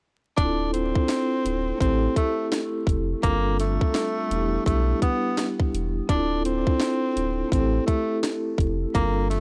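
A swung sixteenth-note groove at 84 BPM in 4/4 drives this reflective, tough boom-bap hip-hop passage in D minor, cut from a longer piece, with every part playing from 0.4 to 9.4 seconds. The garage drum kit sits up front with a layered, produced electronic sound, pairing a tight kick and cracking snare with hi-hat. Beneath it, a round sine sub bass with a fast attack holds long, deep notes between D1 and B1. A close-miked tenor saxophone carries the jazz-style solo melody in a narrow low register, its soft attack and light vibrato warmed further by analog delay, while a mellow vibraphone played with soft mallets rings out a metallic accompaniment with medium motor vibrato. The harmony moves through Dm9, Am7, G9sus4 and Em7 before returning to Dm9 and Am7, all set in a small, dry room with gritty hardware character and a bed of vinyl crackle.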